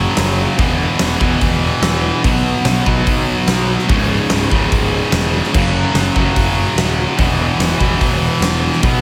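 Driving and heavy, this hard rock excerpt charges ahead at 146 BPM in a straight 4/4, cut from a longer piece. A bright, high-gain distorted guitar sits up front, double-tracked and picked, laying down the riff from the opening moment through 9.0 seconds. Beneath it, a fuzz-soaked picked electric bass carries the low end with a direct and amped, overdriven tone. The big-room acoustic drum kit enters at 0.2 seconds, with a punchy kick, a fat snare, hi-hat and crash cymbal giving the whole thing an arena-sized weight. The riff moves through F#5, E5 and B5 before landing on C#m and circling back to F#5 and E5, all bathed in moderate stage reverb for a big arena sound.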